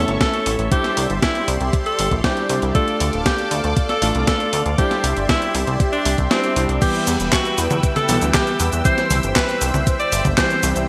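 A bright, 1980s-style digital production sits in a lush hall reverb, with a faint layer of vinyl crackle giving this italo disco excerpt a nostalgic, melodramatic air. Up front, a glossy, nasal synth bass blends pulse and sawtooth waves with a plucky filter and chorus, while a thumpy, tape-warm electronic kick anchors the straight groove. A clean 12-bit drum machine adds cabasa, crash cymbal, handclaps, hi-hat, toms and a medium-tuned snare, all bathed in gated reverb. Above them, a smooth, detuned analog pad holds soft-edged chords with chorus and a moving notch, and a vintage electric grand piano with a clangy low end punctuates the harmony with stabs. An edgy, forceful alto saxophone leads with pop-style vibrato through digital delay, moving over chords from A through Cadd9 and Dm. The kick drops out from 6.3 to 6.8 seconds, and the music then shifts into a new section built on Em and C.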